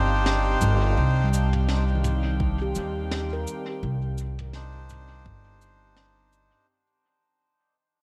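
An echo-heavy, reverberant mix opens this hazy, meditative fragment of ambient dub, cut from a longer piece and fading out across its whole length. At 84 BPM in 4/4 with a light swing on the sixteenths, it rests on a single C minor add-nine chord. A soft, breathy pad with chorus sustains chords in the background, while a drifting glass-harmonics texture adds glassy overtones behind it, washed in chorus and its own reverb. Up front, a woody, dark upright bass plucks the low end, and a reedy, nasal melodica punctuates with stabs thrown into dub echo. A warm vintage brush kit with a rolled-off top, a medium-tuned snare, toms and cabasa also feeds the echo. A bright, ringing handpan enters at 1.2 seconds with echoing arpeggios, and a deep, overdriven electronic kick joins from 2.4 to 5.4 seconds.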